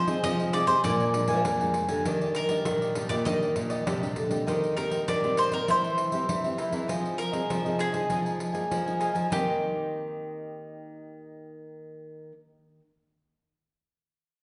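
A straight 4/4 pulse at 99 BPM drives this sunny, lively samba and choro passage in Eb major, with the close, dry pandeiro adding a jingly shimmer until it drops out at 9.5 s. Up front, a mellow, woody mandolin carries the picked melody on its doubled strings, moving through a Fm7, Bb7 and Ebmaj7 opening before the harmony turns toward Eb6 and C7/E. A fingerpicked nylon-string guitar supplies a full-bodied, deep classical accompaniment with fresh strings and audible finger squeak, while a second nylon-string guitar holds down the bass line. A crisp, picked cavaquinho fills in the higher accompaniment. The ensemble sits in a recital hall with a generous, reverberant wash and a soft, rounded top end, and this excerpt is cut from a longer piece, ending on Eb6.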